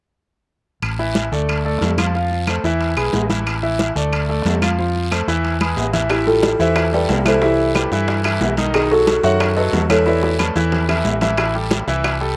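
A passionate, danceable salsa excerpt opens with a dark, punchy fingered electric bass up front, set among background congas and woody claves, a raspy guiro and ringing metal-shell timbales carrying a slapback echo, with a bright, polished concert grand piano joining at 1.0 s. At 6.1 s, after a drum fill, very quiet low-tuned bongos enter and a buzzing, hollow, mellow kalimba takes the melody, also touched by slapback echo, until 10.7 s. The mix is dry, recorded outdoors with little reverb, while the minor-key chords move through sevenths and a suspended turn during a second drum fill.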